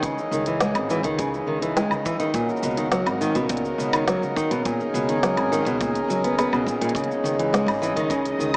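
Drenched in plate reverb and heard as if through a small speaker, this short folktronica fragment has a dreamy, intimate and delicate air. A reedy, breathing pedal harmonium sits up front with sustained chords, moving from C#madd9 to Bmaj7 at 2.3 seconds and returning to C#madd9 at 7.0 seconds. Beside it, a dark fingerpicked steel-string acoustic guitar plays arpeggios coloured by tape echo, while a pizzicato upright bass with gut strings adds a thumpy low end from 0.3 seconds. The rhythm comes from an organic electronic kit of cabasa, crisp hi-hat, woody snare and woodblock, supported by a punchy acoustic kick with a rolled-off top in the background. At 7.0 seconds a reversed, granular texture rises in the background, bright and detuned with a soft attack, carrying its own reverb and analog chorus.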